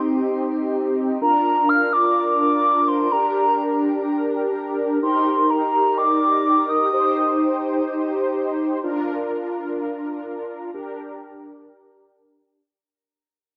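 A hollow, woody clarinet-like synth lead sings a high, warbling melody from 1.2 to 7.6 seconds, its vibrato and delay floating in a lush hall with shimmering reverb. Underneath, mellow, round synth brass with detuned chorus holds sustained accompaniment across Cm, Bb, Gm and Eb chords, giving this melancholic, nocturnal pop fragment a dark, vintage glow. From 8.8 seconds a filter sweep colours the sound as the music fades out.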